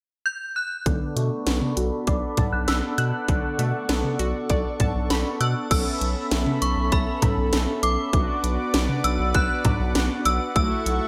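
A ringing, warbling FM synth chime carries the melody from 0.3 s with tremolo and digital delay in this melancholic, cool synth-pop fragment. At 0.9 s it is joined by a punchy, overdriven house drum kit with gated reverb sitting up front, a deep, round analog bass, a smooth chorused pad, dark detuned synth brass and a sawtooth analog pluck whose arpeggios run through a filter sweep until 5.7 s. Everything is set in a bright 1980s-style digital production with plate reverb.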